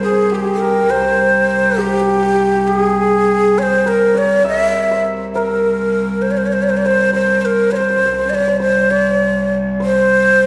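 Persian modal ensemble music in dastgah homayun on C, melancholic and hypnotic at 67 BPM in a straight 6/8, where a breathy, up-front ney with soft attack carries the melody over a bright, shimmering santur second line and a rich cello drone on C2 with light vibrato and an earthy, biting bow, the ensemble placed further back in a wet concert hall across this 10.5-second fragment cut from a longer piece.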